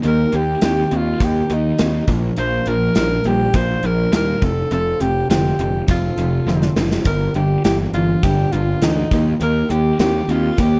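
A clear alto saxophone with light vibrato and a slapback echo carries the pop-style solo melody up front from 0.1 s in this gritty, driving classic rock excerpt at 102 BPM in 4/4. Beneath it, a fuzzy, overdriven picked electric bass and a punchy gated 80s drum kit with a bright stone-room sound sit prominently, with a drum fill at 6.5 s. A crunchy overdriven guitar plays a riff in the background, joined by a brighter, very quiet overdriven electric guitar riff, while a very quiet, boxy plugged-in acoustic guitar adds swing-style picked accompaniment over chords moving from Eb through Bb, F and Gm back to Eb.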